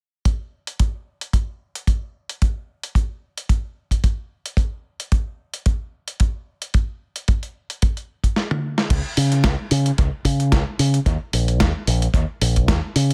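A gritty, compressed sampler-style drum kit with crash, hi-hat, a medium-tuned snare and toms, trailed by dub echo, opens this nu-disco excerpt at 111 BPM alongside a dry, tight acoustic kick sitting up front, the 16ths carrying a light swing and a cosmic, sensual mood. After a drum fill at 8.4 seconds, a bright, fingered electric bass with an envelope filter enters at 8.9 seconds, direct and amped, up front with sidechain pumping. The echo-heavy mix is steeped in studio reverb, and the clip is cut from a longer piece.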